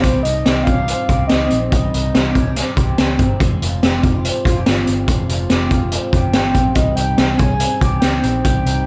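A raw garage drum kit drives this restless, wistful slice of jangly indie pop at 143 BPM in a straight 4/4, its boomy kick, high-tuned snare and hi-hat sitting gritty and up front in a gated reverb, while a vintage muted picked electric bass adds a dark, foam-muted roundness underneath through the Cm and Fmadd9 changes. An electric guitar through a small old amp plays twangy, slightly broken-up arpeggios soaked in lush chorus throughout. A soft octave-layered synth lead, full and sine-like with a sub octave and vibrato, carries the melody from 0.0 to 2.5 seconds and returns at 6.3 seconds, treated with chorus, phaser, slapback echo and plate reverb, all within a light room reverb.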